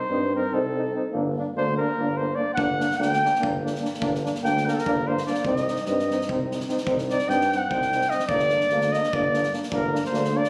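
This short piece of a longer performance sounds as if caught on a phone in the room, with light studio reverb wrapping the band. It is restless, fiery Balkan brass band music in 7/8, counted at 293 BPM in eighths with a straight feel, set in G harmonic minor and tuned slightly flat to A4 = 437 Hz. A warm flugelhorn with a smooth top carries the melody up front from the opening second, its classically styled solo moving between A4 and G5. Beneath it, a clear euphonium with light vibrato sits distant and roomy, while a trombone, also clear with light vibrato, holds a narrow accompaniment in the background, and a warm, roomy tuba anchors the bass between G1 and G2. An acoustic drum kit with a small-room sound, a medium-tuned snare and a punchy kick enters at 2.6 seconds, as the harmony moves between C minor and G minor.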